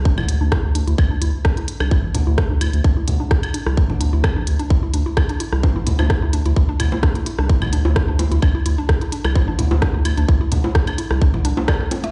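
Cut from a longer minimal techno piece at 129 BPM, this hypnotic, quirky passage opens on a deep, thick, saturated sine sub bass that pumps against a tight, up-front layered electronic kick. A woody, round FM mallet-like pluck with a sub octave, chorus and delay plays a filter-swept riff, while tape-warm congas, claves, woodblock and bongos echo through digital delay beside a clicky minimal kit of hi-hat and rim click. It all sits in a bare-room, big-system sound with large studio reverb and a dulled top end, until the full band lands an accent at 11.7 seconds.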